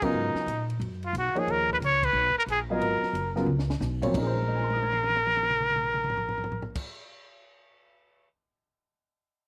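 Dry, open-air sound frames this brief, searching, spiritual modal jazz excerpt in Bb minor at a swinging 180 BPM, where an intimate, nasal straight-muted trumpet with breathy vibrato and slapback echo carries the melody up front over woody upright piano, pizzicato upright bass with steel strings, and a dark, compact cocktail drum kit with a high-tuned snare, moving from Abm11 to Bbm11 at 4.1 seconds, marked by a band accent at 2.0 seconds, and with drum fills before the kit rings on alone until 8.3 seconds.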